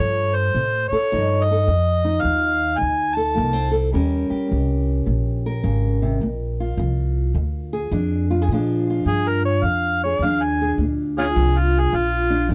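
A dry, close 1970s-style studio sound frames this swaggering, rollicking acoustic country blues excerpt in Bb mixolydian at 106 BPM with a swung 4/4 feel, as a dark, boxy fingerpicked parlour guitar and a woody, thumpy pizzicato upright bass play throughout beneath a gritty, amplified, overdriven harmonica that carries the jazz-style melody with light vibrato and tongue slaps from 0.0 to 3.7 seconds, then returns at 9.1 seconds for an up-front solo.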